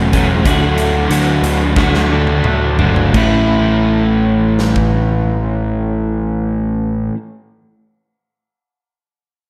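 In a straight 4/4 between 84 and 95 BPM, this short cut from a longer shoegaze and dream pop rock piece slows down over its opening stretch, and a drum fill runs from 1.8 to 3.1 seconds. The huge arena drum kit is acoustic and sounds like it was played in a hall, with a pumping room sound, bright cymbals, a medium-tuned snare and a punchy kick across crash, hi-hat, kick, snare and toms, before falling away at 4.9 seconds. Up front, a crunchy overdriven guitar plays a picked riff with a subtle chorus, while a clean, hollow-bodied semi-hollow electric guitar picks its own riff in the background, smeared by reverse reverb. A picked electric bass, direct and amped with a bright edge, anchors the low end. In A major, the harmony moves from D to A as a new section arrives at 3.1 seconds. The mix is dreamy and soaked in plate reverb over a small room ambience, giving a blissful, wistful glow.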